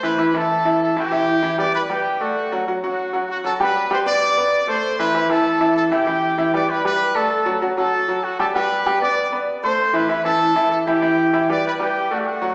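Latin music in G major at a brisk 194 BPM, festive and danceable, cut from a longer piece. A tight, bright trumpet section carries the melody up front with light vibrato and a close, pop-style sound, while an upright piano accompanies with a woody, brilliant and intimate tone and audible action noise; both play throughout the 12.5 seconds. Chords such as Em7, a rootless D and Gadd9 pass by, and a wet recital-hall reverb of 1.6 seconds places the recording in a church or concert-hall space, heard with a small-speaker quality.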